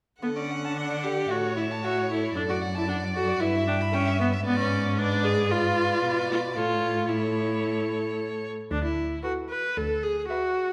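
A straight, steady 4/4 pulse drives this quick classical-period movement for string quartet, spirited and graceful in mood and cut from a longer piece. The first violin carries the melody with a smooth, even, vibrato-laden bowed tone that sits somewhat distant, while the second violin spins a second line in the same singing manner. Up front, the viola fills in the accompaniment with a focused sound, and the cello anchors the bass with soft attacks, expressive portamento and vibrato, stopping at 10.2 s just before the upper strings finish at 10.7 s. The harmony moves through a mix of major and minor chords and passes through a tense diminished chord at 4.5 s. Each of the four single players brings a rich bowed tone, and a wet recital hall reverb gives the ensemble a resonant, spacious glow.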